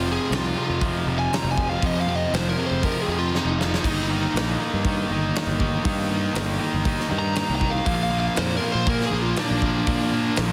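A steady, straight 4/4 groove from a big rock drum kit arrives at 0.3 seconds, its punchy kick, medium-tuned snare, hi-hat and crash cymbal ringing out in a natural big room in this dark, cathartic stretch of quiet-loud alternative rock. Beneath it, a growly, fuzz-laden fingered electric bass pushes hard, while a bright, cranked stack guitar sits up front and a thick, distorted fuzz guitar doubles the riff from further back. Over the top, a biting lead guitar plays a solo throughout, its overdriven tone carried by tape echo. A very quiet, slightly broken-up guitar through a small old amp picks compressed arpeggios at the start, dropping out at 3.8 seconds, just as a drum fill from 3.3 seconds ends. The harmony moves from Fm7 to Eb/G and then Bb, all set in light reverb with a heavily compressed, radio-like finish, in a passage cut from a longer piece.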